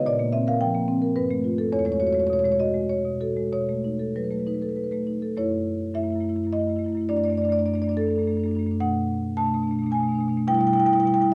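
A solo marimba played with soft mallets opens this short, flowing and reflective passage from a longer contemporary classical piece, its woody, round, mellow rosewood tone sitting up front and spanning E2 to A5 at a rubato 96-110 BPM in 3/4, moving through extended chords such as G9 and B9 before shifting at 5.4 seconds to a second section of F#m7, D/F#, Bm7 and Em/B, all bathed in the wet reverb of a recital hall.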